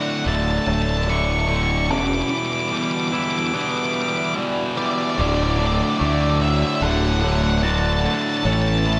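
Post-rock in a euphoric, soaring mood, this brief passage from a longer piece climbs through a build-up over its first 5.2 seconds before opening onto a D major chord. Up front, a dark octave-fuzz lead guitar carries the melody through tape echo, sitting alongside a round, overdriven fuzz bass played with the fingers that enters at 0.3 seconds. Beneath them, two bright, picked distorted guitars play a low riff in the background, one of them compressed and the other tight. A mellow, clean guitar weaves arpeggios through tremolo and tape echo, while a very quiet twangy guitar adds its own fingered arpeggios lower down. A shimmering, retro pulse-width pad with chorus and a slow attack holds sustained chords far underneath, and the whole band sits in a large studio room with moderate reverb as the harmony moves from Dmaj7 and Em7 to D and finally Aadd9.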